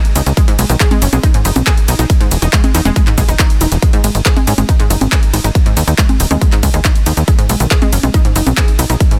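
Uplifting trance at 139 BPM in a straight 4/4, soaring and driving, this excerpt is cut from a longer piece and moves through B, E, G#5, D#sus4 and back to B. An overdriven, up-front electronic kick and a dry, punchy analog drum machine with congas, handclaps, hi-hat, ride cymbal and shaker carry the groove, while a tight, nasal sequencer bass with tube saturation and sidechain pumping drives underneath from 0.2 seconds. Above them, a round, detuned analog pluck arpeggio with chorus, tape echo and sidechain pumping fills out a dense, heavily limited modern master with little reverb.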